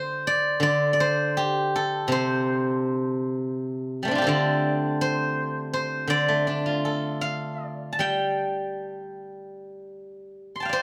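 A solo steel-string zither, played with fingerpicks and sitting up front, opens this serene, pastoral piece of traditional Chinese plucked-string music, its silvery, ringing tone spanning C3 to C6 in a rubato 4/4 around 82 BPM, captured with close, detailed microphones and light reverb in a 10.8-second cut from a longer piece.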